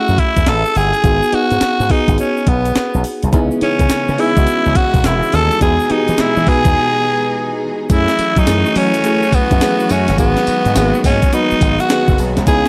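A swung sixteenth-note groove at 105 BPM in 4/4 drives this bouncy, confident new jack swing cut in F# dorian, taken from a longer piece. A 12-bit drum machine with a thumpy kick, medium-tuned snare, hi-hat and tambourine gets an overdriven, sampler-style edge and the sound of a large room, while an egg shaker adds a grainy sparkle in the background. Slap bass run through an envelope filter sits punchy and bright beneath a mellow, warbling FM electric piano whose fast-attack chords decay over a faint noise layer, moving through F#m7, G#m7, C#m7 and Emaj7. Up front, a raspy, gritty tenor saxophone carries the melody with pop-style vibrato and a digital delay. A clear, focused string section enters at 3.3 seconds with bowed sustained chords tucked behind the band, a short break arrives at 6.8 seconds, and the second section begins at 7.9 seconds. The production is dark, with light reverb and a digital ambience.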